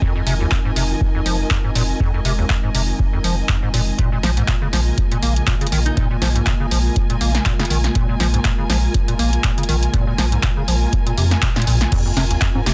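A driving 4/4 groove with a swung sixteenth feel opens this raw acid house excerpt, built on a deep, tape-warm electronic kick and a punchy analog drum machine of dry snare, handclaps, hi-hat, congas and crash cymbal. Beneath it a round sine sub bass pumps against the kick, while a squelchy, resonant acid bass riff with overdrive, chorus and delay carries a filter sweep over the Fm7 and Bbm7 chords. A warbling, nostalgic pad with a dark lo-fi tone holds sustained chords, and a lush bowed string section adds a soft, expressive texture high above, both breathing with sidechain pumping. Around 5.9 seconds a raspy alto saxophone note flickers briefly through tape echo, sounding distant and roomy. The band hits an accent at 11.4 seconds before the chords return to Fm7, all within a dense, heavily limited mix with light reverb.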